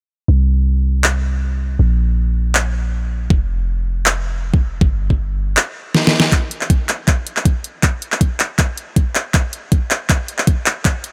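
Future bass at 159 BPM in a half-time, lightly swung 4/4 feel, this short, emotional and dreamy clip opens with a deep, boomy 808-style bass between F1 and C2, its sine tone carrying a noise layer and a fast attack, pumping against a sidechain until 5.6 seconds. A layered pop drum kit of handclaps, hi-hat and a deep snare enters at 1.0 seconds, joined at 3.3 seconds by an overdriven, knocking electronic kick, both re-recorded in a small room and sitting up front. A drum fill at 5.9 seconds leads into a second section that builds through to the end, with little reverb keeping the sound close and dry.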